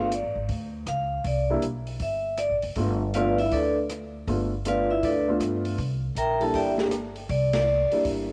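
A home cassette recording with light reverb and small-room ambience captures a sophisticated, swinging slice of small-group swing and bop at 159 BPM in G mixolydian, where a ringing, close-miked vibraphone with medium hard mallets and motor off carries the melody over a mellow upright piano with audible action noise and slight detuning, a growly pizzicato upright bass on steel strings, and an open jazz drum kit with dark cymbals and a boomy kick, the piano and drums both colored by cassette tape, before the band hits an accent at 7.5 seconds.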